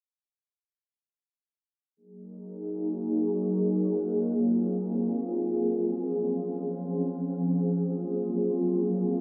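Hip hop fragment in free time and Gb lydian, dreamy and blissful, built on a glassy, ethereal FM pad that enters at 2.4 seconds with slow-blooming sustained chords (Gb69, Ab13, Dbmaj7, Ab13), thickened by ensemble chorus and phaser and set up front yet dark beneath a filter sweep and a long shimmer reverb tail until 9.2 seconds.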